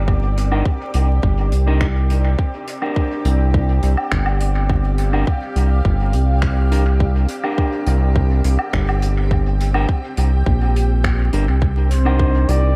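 An echo-heavy mix dusted with vinyl crackle gives this deep, hazy ambient dub excerpt its sense of space, with a round, up-front analog bass and a tight, tape-warm electronic kick anchoring a blurred, detuned granular pad and a resonant, chorused bubbling filter texture in the background. A dark, clean electric guitar plays stabs through dub echo, while an unplugged kit of finger snaps, hi-hat and woodblock, played with bundle sticks in a small room, adds an acoustic layer under the same echo. At 11.9 s a veiled trumpet with a bucket mute enters with a brief solo line touched by light vibrato, just after the harmony returns to Cm9.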